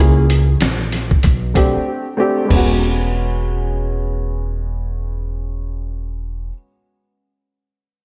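A swung 16th-note groove in 4/4 drives this relaxed jazz-hop clip, cut from a longer piece, as a gritty, compressed, tape-warm sampler-style kit of thumpy kick, medium-tuned snare, hi-hat and crash cymbal enters at 0.3 seconds, breaks at 1.9 seconds and drops out by 2.7 seconds. Beneath it, a dark, woody pizzicato upright bass sits up front with a slightly detuned, worn upright piano that carries a slapback echo and lays down warm accompaniment chords. A lush hall reverb gives the mix a big arena sound.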